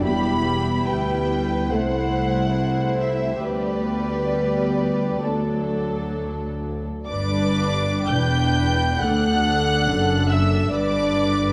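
A rubato 4/4 pulse at 57-74 BPM carries this serene, slow romantic movement for string orchestra in G major, cut from a longer piece: a dark, woody, lush violin section sings the distant melody with vibrato, a second violin section adds an intimate line up front, violas supply pure, floating accompaniment, and cellos in the background join rich double basses on the bass line, all bowed sul tasto in a moderate scoring-stage reverb, with a new section opening on a G chord at 7.1 seconds.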